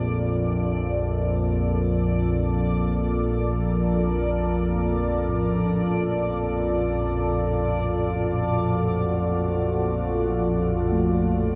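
A detuned analog drone sits up front, its mellow sawtooth, pulse and triangle tones shifting with pulse-width and ring modulation and thickened by chorus as it holds low from Bb1 to F2. This dark ambient excerpt moves in free time in Bb major, tuned to A4 = 442 Hz, with an ominous, cavernous mood. Above the drone, a deep, moody pad layers unison sawtooth, sine and a sub octave into slow-attack sustained chords, bathed in chorus and shimmer reverb, while a reversed, granular texture hovers on a single high D with a dreamy, swelling softness. At 5.3 seconds a very quiet bronze singing bowl enters, struck with a suede striker, its metallic ring and slow beating adding a meditative arpeggio in the low register. The harmony rests on Bb before moving to D at 6.7 seconds, all of it suspended in a huge, wet reverb with a long decay that makes the space feel vast and dark.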